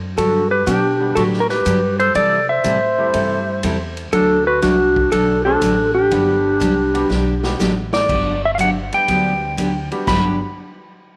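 A swinging 4/4 groove at 121 BPM carries this playful, cheerful western swing excerpt in G major, where a dark, compressed lap steel sings the up-front melody with slide and volume swells, a raspy, growling clarinet weaves a scooped, vibrato-laden second line until 7.6 s, a full-bodied picked dreadnought acoustic guitar with finger squeak and a brilliant upright piano entering at 1.0 s fill in the accompaniment, a woody, thumpy pizzicato upright bass anchors the bottom, and a distant, roomy big-band drum kit with a boomy kick plays a fill at 7.1 s, all set in a moderate echo chamber reverb.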